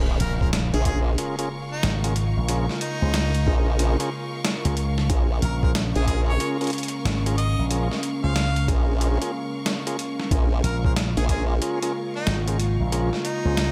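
Glitch hop at 92 BPM in Bb minor, this gritty, funky excerpt swings its sixteenths over a Bbm7 chord, with a thumpy sampler-style electronic kick and a boom bap kit of hi-hat and medium-tuned snare, both re-recorded in a large room. A saturated formant-sweep wobble bass holding Bb1 sits up front beside a bright, punchy slap bass with an envelope filter, while a lightly overdriven tonewheel organ with key click and delay plays stabs over a dark, nostalgic tape-like pad that warbles with chorus and sidechain pumping. A close-miked jazz harmonica carries the melody with scooped notes and vibrato, lush bowed symphonic strings add soft texture high above, and an electronic impact sounds in the background until 2.5 seconds.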